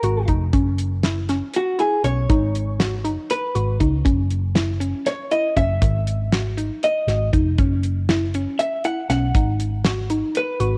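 A home recording on cassette with light reverb and studio ambience carries this intricate, driving progressive instrumental in 7/8, moving at 238 BPM in eighths, with a vintage hollow-body jazz guitar soloing up front in a dark, clean, compressed tone across the whole 10.8 seconds. Beneath it, a hollow, bouncy square-wave pluck with detuned chorus and a moving notch plays mellow arpeggios, while a round, amped short-scale electric bass and a dry, damped 70s drum kit with a fat snare, tight kick, hi-hat and rolled-off top drive the band. The chords circle through G#5, F#7sus4, G#m7 and F#5, and the piece is cut from a longer work.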